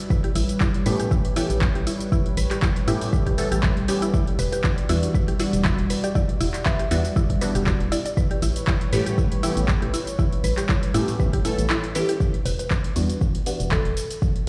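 Late-night and smooth, this deep house excerpt moves at 119 BPM in E dorian with a light swing, the chords shifting between A9 and Em9 over an overdriven, up-front kick and a tape-warm analog drum machine carrying handclaps, hi-hat and shaker. A hollow, organ-like FM bass and dark, resonant dub chord stabs with phaser and tape echo pump against the kick, while a sustained analog pad and a woody, chorused mallet-like pluck playing arpeggios fill the space until 12.2 seconds. A second round, mellow mallet pluck carries a melody in the background from 4.4 to 8.1 seconds and returns at 12.5 seconds, the kick briefly dropping out just before the final section, all heard as if played through a big sound system in a bare room with vinyl crackle.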